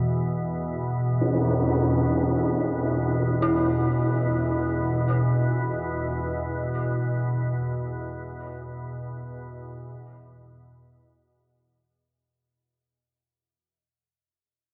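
Soaked in a huge reverb with a 7.1-second tail, this dark, cavernous ambient drone drifts in free time over a detuned, organ-like drone sitting up front from the start, while a close, dry tam-tam sounds at 1.2 seconds and an eerie, inharmonic bell arpeggio enters at 3.4 seconds with chorus, tremolo and diffuse delay, before the recording fades out from 6.4 seconds.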